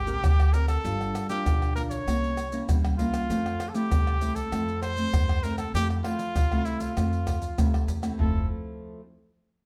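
Heard from further back in a studio with a wet reverb of 0.8 seconds, this short cut from a longer samba and choro piece has a playful, sunny mood at 98 BPM in a straight 4/4, centred on F major. A warm jazz-style trumpet carries the solo melody from the start, singing with vibrato and scooped notes, while a small, fingerpicked nylon-string guitar with fresh strings supplies the accompaniment. Underneath, a woody, thumpy pizzicato upright bass on steel strings anchors the low end. The percussion of maracas, pandeiro, surdo and tamborim sits up front, close and dry, with a tight surdo and soft hands, entering at 0.1 seconds. The harmony moves from Abmaj9 through Gm7 and C7b9 to Fmaj7, and the guitar rings on alone until 9.0 seconds after the other parts have stopped.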